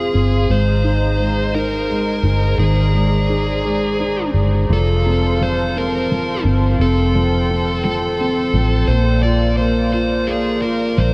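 Pop in a heartfelt, swaying 6/8 at 57 BPM, tuned to A4 = 435 Hz, this short cut from a longer piece drifts through Abadd9, F and Bbadd9 chords in a dreamy mix soaked in a huge ambient reverb. A dark, smooth overdriven lead guitar carries the melody up front with analog delay, while a felt-muted upright piano gives mellow, intimate accompaniment and adds a fill from 3.6 to 4.7 seconds. An airy, breathy pad with chorus holds sustained chords above a round, foam-muted vintage electric bass that sits prominently in the low end.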